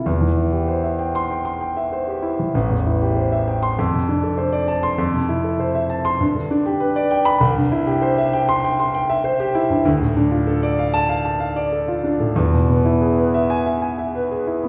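This classical virtuoso piano study has an agitated, stormy mood and moves at 98 BPM in 4/4 with a rubato feel. A single concert grand piano carries the whole performance from 0.0 to 14.7 seconds, spanning A1 to C6 with a deep bass, short sustain and a warm tone that sits up front. The harmony travels from C/E through Am7, Dm7/F and Fmaj7 to G, reaching C at 7.4 seconds before turning to Dm and landing on E at 12.4 seconds. The sound carries a wet recital hall reverb with a 1.2-second decay, giving the impression of listening from further back in the room. The passage is cut from a longer piece.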